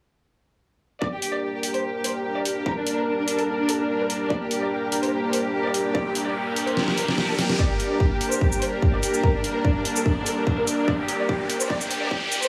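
Bathed in a lush hall reverb, this aggressive, chaotic heavy wobble dubstep excerpt sets a floating, distant violin section with tape echo over a detuned supersaw pad that pumps under sidechain and filter sweeps, while a punchy electronic kick and an overdriven kit of deep snare, bright hats and shaker drive the half-time groove, an electronic riser entering at 5.6 s, the kick dropping out at 6.8 s for a drum fill, and a build-up taking over from 7.6 s.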